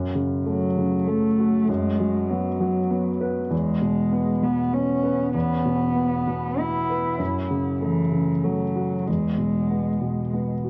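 A grand piano opens this neoclassical excerpt with intimate accompaniment in a rubato triple metre, its action noise audible and its tone natural and close. At 0.5 s a single muted cello joins as a second line, bowed con sordino with a soft attack, light vibrato and a dark, veiled colour, with tape echo trailing behind it. The hopeful, private mood comes through the cassette character on both instruments, a moderate room reverb and chords that drift from F#m toward E.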